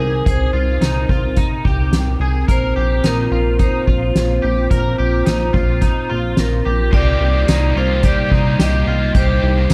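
Melancholic and haunting, this dream pop excerpt moves at 108 BPM in a straight 4/4 in C minor, cut from a longer piece. A bright, metallic vibraphone struck with hard mallets carries the melody, close-miked and ringing, its notes trailed by tape echo. Beneath it, a warbling, nostalgic pad built from detuned square and triangle tones holds sustained chords with chorus and its own reverb, while a twangy, slightly broken-up electric guitar picks arpeggios through ensemble chorus and tape echo. A glossy, retro synth bass with a filter pluck anchors the low end, and a soft-mallet drum kit enters at 0.3 seconds with a fat snare, boomy kick, hi-hat, crash and tambourine in a big room sound. The chords move from Ab/C to Bbsus2, and at 6.9 seconds the harmony shifts to Cm7 as an overdriven, bright electric guitar joins with harmonic tremolo and subtle chorus. The overall production is dark with light reverb.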